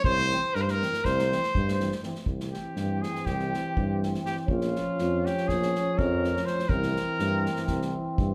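A live band in one room, wrapped in moderate large-studio reverb, plays this bittersweet, virtuosic Balkan brass fragment in 9/8: a clear trumpet with light vibrato sits up front and takes a solo from 2.3 s, a very quiet, soft-attack flugelhorn adds a second line until 2.0 s, a mellow tuba carries the bass, a distant euphonium and a dark trombone supply accompaniment, and an airy acoustic drum kit, played with bundle sticks, adds punchy kick and snare as the chords move from C to Bbm and back.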